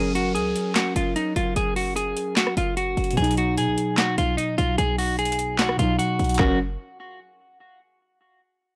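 A clean, dark electric guitar sits up front carrying the melody in this short cut from a wistful yet triumphant half-time trap track at 149 BPM in F# major, moving from F# to B. Beneath it, warbling lo-fi synth keys with chorus add a nostalgic, detuned haze alongside a short, punchy 808-style bass, while an overdriven trap kit with a hard-clipped kick, sharp snare, metallic hats, claps and rim clicks enters at 0.2 seconds. A background downlifter runs until 3.2 seconds, all set in a dry, gritty recording with digital ambience.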